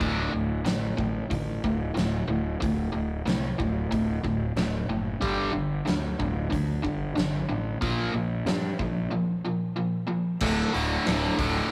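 An aggressive, heavy hard rock excerpt in D minor opens at once with a biting, double-tracked overdriven guitar riff bathed in spring reverb, a growly fuzz bass played with the fingers, and a huge arena drum kit with a fat snare, punchy kick and bright crash and hi-hat. At a straight 92 BPM in 4/4, the riff moves through D5, G5 and Bb5 before returning to D5 at 10.4 s, where the music shifts into a new section. The rough rehearsal-room sound has a small-room ambience and a saturated glow, with guitar and bass sitting up front.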